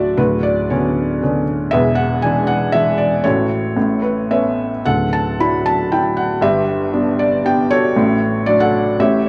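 A 3/4 pulse at 116 BPM moves with a free, rubato give, setting a hopeful, relaxed mood for this short classical excerpt in D major, cut from a longer piece. A felt-muted upright piano plays solo throughout its 9.3 seconds, sitting up front with a soft, intimate, mellow tone that spans from the low D1 up to B5. The harmony drifts through colorful chords, opening on Bmadd9/D, passing through E7, A6 and Aadd9, then settling toward Dadd9 and G before resting on D/A at 8.0 seconds. The sound carries the wet bloom of a recital hall, with reverb lingering around 1.7 seconds. A worn cassette-tape character adds a warbling pitch drift, lending the lyrical playing a faded, old-tape quality.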